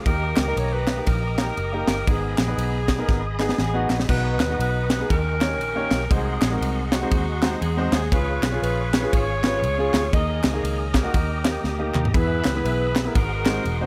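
A swung 4/4 groove drives this soulful, fervent uptempo gospel excerpt, carried by a punchy, up-front fusion drum kit with a high-tuned snare and a round, foam-muted electric bass, while hollow, dry handclaps sit in the background. A tight, vintage-toned saxophone section with light vibrato and a soft attack takes the melody over a natural-sounding concert grand piano and a reedy tonewheel organ holding sustained chords through a slow rotary speaker with key click and chorus vibrato, everything set in light reverb. The drums fill from 3.1 to 4.1 seconds, joined by a piano fill from 3.3 seconds, and the drums fill again at 11.6 seconds as the chords move through dominant and suspended colours.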